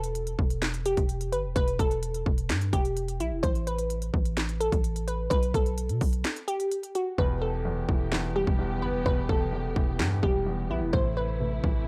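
Brooding and hard-hitting, this half-time trap excerpt at 128 BPM in E minor is built on a glassy wavetable pluck melody with chorus, a growling, buzzy 808-style bass and an up-front trap kit of hard-clipped kick, sharp snare, handclaps and crisp hi-hats. After a break at 6.2 seconds, the hi-hats drop out at 7.2 seconds as a dark baby grand piano with audible action noise and a veiled, con sordino string section with vibrato join, the strings adding sustained chords beneath the pluck. The digital ambience and gritty hardware sound give the mix a dry, raw edge over its moody Em, Asus2 and Gadd9/B changes.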